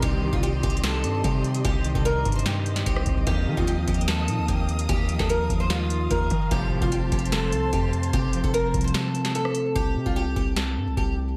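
A brooding, menacing trap excerpt in C dorian moves at 148 BPM with a half-time feel, cut from a longer piece and soaked in a dreamy plate reverb. Up front, a picked old ladder-braced acoustic guitar carries the melody with a woody, boxy tone from its old strings, touched by analog chorus and delay. Beneath it a thumb-plucked concert harp rings out the accompaniment, while a dark symphonic string section holds lush, bowed chords with expressive vibrato and a smooth top until 9.7 s. A big, bright sawtooth polysynth sits in the background, landing fat, detuned stabs with chorus and delay on the Cmadd9, Ebsus2 and F chords before the harmony settles on C5. A deep, sine-toned 808-style bass sustains and decays under a booming analog drum machine, whose tape-warm deep kick, crisp snare, metallic hats and rim click were re-recorded in a large room. The kick drops out from 8.9 to 9.8 s, and the hi-hats fall silent from 9.8 s as the closing section arrives.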